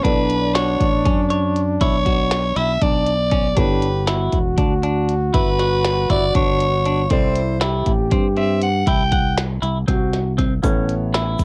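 The sound is worn and warbling, like an old cassette tape, with a light reverb and a warbly pitch drift. This brief cut from a longer progressive instrumental band piece is bright and driving, moving at 238 BPM in eighths in a straight 7/8. A raspy, gritty soprano saxophone takes the solo up front with an edgy pop-style vibrato and stops at 9.4 seconds. Beneath it, a mellow jazz-style trombone carries a second line with scooped notes and a smooth top. A clean, compressed semi-hollow electric guitar plays picked arpeggios, while a dark baby grand piano with audible action noise and short sustain sits intimately in the background. A round, punchy fingered electric bass and an electronic kit with a deep kick, tiny snare and clicky hats drive the harmony through Bmadd9, G and C, and a grainy egg shaker joins quietly at 10.6 seconds as the chord turns to A.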